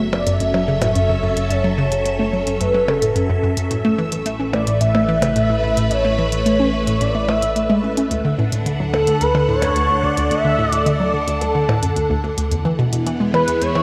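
A straight 4/4 pulse at 109 BPM is marked by clicky electronic percussion blips and hi-hat, re-recorded in a small room and trailed by delay, in this mysterious, cosmic piece of ambient, sequencer-driven space music cut from a longer work. A hollow, bouncy square-wave pluck with a moving notch plays a detuned riff through chorus and delay. A phased string machine holds swirling, vintage chords under ensemble chorus and a phaser. Beneath them an analog drone bass, resonant and evolving with pulse-width modulation, sits lowest in the mix. From 0.1 seconds an expressive synth lead carries the melody, its nasal, smooth tone shaded with vibrato, ensemble chorus and delay, while the harmony moves from F#m7 to Asus2, D and E. A wet plate reverb with a 2.6-second decay bathes the recording.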